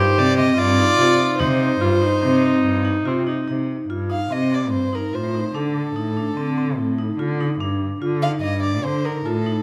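Pensive yet urgent, this short excerpt of contemporary chamber music moves at 145 BPM in an uneven 5/4 meter with a straight feel, centered in C dorian. A dark, intimate violin carries the melody, bowed sul tasto with light vibrato and a soft attack, while a reedy, gut-string viola in period style adds a second line that drops out at 3.5 seconds as the music shifts into its next section. Beneath them, a vibraphone struck with medium hard mallets rings out metallic arpeggios with medium motor vibrato, and a rich, expressive cello supplies the bass with vibrato and portamento. A deep, large frame drum played with soft hands sits very quietly in the background until 3.2 seconds. The harmony moves from Cm to D7(no3) and settles on Gsus2, all framed by a moderate recital hall reverb and close, detailed microphones that keep the violin and cello up front.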